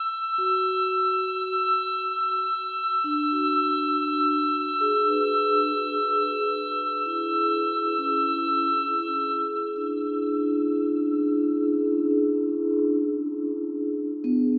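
Set at 68 BPM in a straight 4/4, this reflective, melancholic ambient fragment, cut from a longer piece and tuned to A4 = 444 Hz, drifts along at an unhurried pace. A glassy, ethereal glass harmonica holds a pure, slow-blooming tone high on E6 near the front of the mix, shaping the opening texture until it stops at 9.3 seconds. Beside it, a vibraphone played with soft mallets and the motor off spins mellow, ringing arpeggios between B3 and B4, its metallic shimmer trailed by tape echo and fading out across the first section. The harmony moves from Esus2/F# to E7 at 2.2 seconds, then gives way to unaccompanied vibraphone for the closing stretch until 14.6 seconds. An enormous reverb with an 8-second tail soaks the dreamy mix, and a rolled-off top end keeps the sound soft and hazy.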